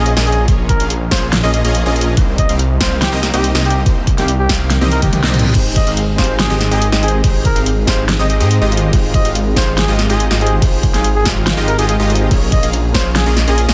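Future bass at 142 BPM in a half-time feel in F minor, this dreamy, lush excerpt sets a veiled, growling bucket-muted trumpet melody over punchy detuned supersaw stabs and a thick chorused saw bass, all pumping under sidechain, along with a knocking overdriven electronic kick and a fat-snared pop kit, while a drum fill at 4.7 seconds and a very quiet reverse cymbal at 5.1 seconds usher in a soft felt-muted upright piano with audible action noise and dub echo in the background, through a dense, heavily limited master with light reverb.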